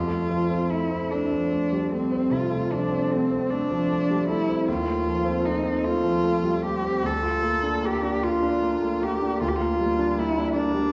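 A bowed cello and a grand piano begin together in this serene, lyrical romantic classical passage in F major, moving at 48-54 BPM in a rubato 12/8, tuned slightly low to A4 = 437 Hz and cut from a longer piece. The solo cello carries the melody up front with a warm, soft-attacked tone, expressive vibrato and portamento, while the clear, intimate piano accompanies beneath it, its action noise audible, through harmonies of F, F7/Eb, Bb/D and Gm/D. The duo sounds as if heard from further back in a recital hall, with a wet reverb of about 1.5 seconds surrounding the 10.9-second passage.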